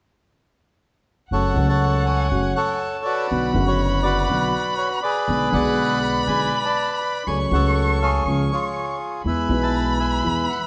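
Dramatic and tense, this tango excerpt in F# minor moves at 121 BPM in 4/4 with a rubato feel, all four parts entering together at 1.3 seconds. A reedy, smooth bandoneon carries the melody up front, while a single bowed violin adds a rich, expressive second line with vibrato and portamento from a distant place in the mix. Underneath, a dark concert grand piano supplies mellow, intimate accompaniment with deep bass and audible action noise that lends it a vintage character. A pizzicato upright bass on steel strings gives a woody, growly, thumpy foundation. The harmony travels from F#m through Bm and G#dim/B to F#m/C#, then C# and E, all set in a moderate scoring-stage reverb.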